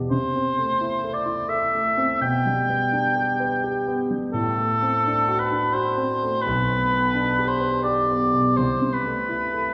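In a triple metre with a rubato feel, this tender, lyrical romantic classical fragment pairs a soft-attacked oboe melody with light vibrato, entering at 0.1 s, over a polished, present grand piano accompaniment with long sustain, while the harmony moves from Am/C through G/B and D7/A and back, all set in a wet scoring-stage reverb heard from further back in the room.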